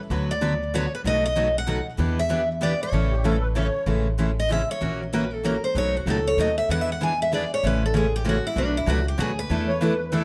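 A bright, picked steel-string acoustic guitar carries the melody through a tape echo and takes a solo from 3.9 s in this playful, swinging jazz manouche waltz, cut from a longer piece. Two more picked acoustic guitars play the accompaniment, one up front and one in the background, over a woody, thumpy pizzicato upright bass with gut strings that moves through changes such as B7, Em7 and Amaj7. A reedy, shimmering musette accordion adds brief second lines around 3.1 s and 9.7 s, and the whole group sits in a moderate club reverb.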